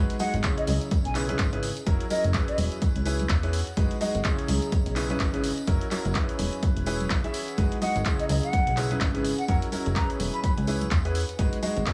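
Energetic and bittersweet, this piano house excerpt at 126 BPM with a 16th-note swing sets a bright, woody upright piano riff and a plucky, wave-folded analog bass, both pumping under sidechain, against a punchy electronic kick, analog drum-machine handclaps and hi-hat, background tambourine and congas, and a warbly lo-fi tape-like pad with chorus that enters at 0.8 seconds, while an airy, hollow jazz flute melody appears from 0.2 to 2.6 seconds and again from 7.8 to 10.5 seconds over a looping G#m7, C#m7, F#7, E6 progression in a small room ambience.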